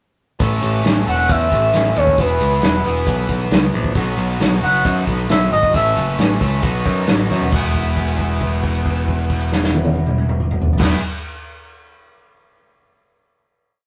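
At 0.4 seconds a double-tracked, distorted electric guitar riff with ringing chords starts together with a growly, punchy picked bass playing driving eighth notes and an up-front acoustic drum kit with dark cymbals, a medium-tuned snare and a big rock groove played with bundle sticks. This short, carefree and jangly indie rock piece moves at a straight 135 BPM in 4/4, in E major and tuned slightly flat of standard pitch, with the harmony moving through A, E and B. At 1.1 seconds a smooth, expressive synth lead enters over the band, its sawtooth and triangle tone shaped by a soft attack, chorus and vibrato as it sings mellow, sustained hook phrases. The synth drops out before a drum fill leads into the closing E chord at 7.5 seconds, where a held note rings out to the end. The whole has the rough, saturated character of a rehearsal-room recording, set in moderate studio reverb.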